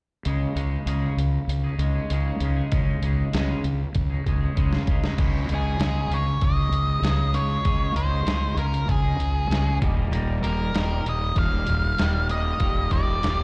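Heard live through a venue PA with a recital-hall ambience, this bittersweet, restless excerpt of quiet-loud alternative rock at 97 BPM opens on twangy clean electric guitar arpeggios drenched in lush chorus and slapback echo over a growly, overdriven fuzz bass played up front and a muffled, pitched-down sampler-style drum kit with a thumpy kick, and after a drum fill at 4.0 seconds a dark, octave-fuzz lead guitar enters at 5.5 seconds with a distorted melody trailed by slapback echo and analog delay.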